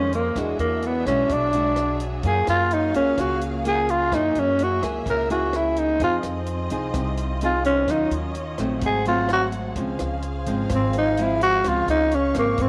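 Bossa nova with a sunny, sophisticated mood, this short cut from a longer piece features a growling tenor saxophone up front, soloing throughout with a dark, breathy subtone, raspy grit, scooped notes and vibrato. A fingerpicked nylon-string guitar with a full-bodied, classical tone and audible finger squeak carries the accompaniment, while a lush bowed string section holds sustained chords and a woody, thumpy pizzicato upright bass anchors the low end. A compact cocktail kit enters at 0.1 s with hi-hat, rim click and a tight, dry kick as the sophisticated chords move from E9 toward a Dbmaj7 resolution at 9.8 s, all set in a wet spring reverb.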